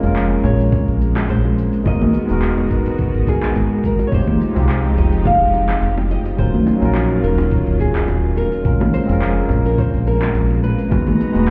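A round analog bass sits up front, deep and dark, blending sawtooth, sine and triangle tones into a sustained, evolving line with a fast attack. This relaxed, smooth sunset chillout excerpt has a light swing in 4/4. Above it, a fingerpicked flamenco guitar carries the melody with audible finger squeak, roughened by vintage 12-bit sampler grit and trailed by delay. A clean, direct tine electric piano provides accompaniment, while a dark chamber string section holds soft-attack sul tasto chords with light vibrato in the background over a minor ninth progression. The electronic kick enters at 0.7 seconds with a thumpy, compressed, gritty sound, and a layered deep house kit adds handclaps, shaker and metallic, overdriven hats; ringing bongos and congas, played with hard hands, sit close and dry behind them. The whole mix is muffled as if heard through a wall, wrapped in club reverb and digital ambience.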